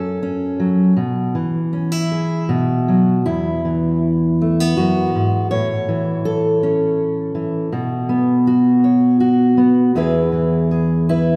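Folk fingerstyle piece in E major at 80 BPM in a rubato 3/4, where a lone fingerpicked steel-string acoustic guitar, dark and up front with audible finger squeak, plays from E2 to C#5 through a nostalgic, pastoral progression from F#m and E/B to Eadd9, A, Bsus2 and home to E, all bathed in a wet church reverb of 2.5 seconds in this 11.4-second fragment of a longer work.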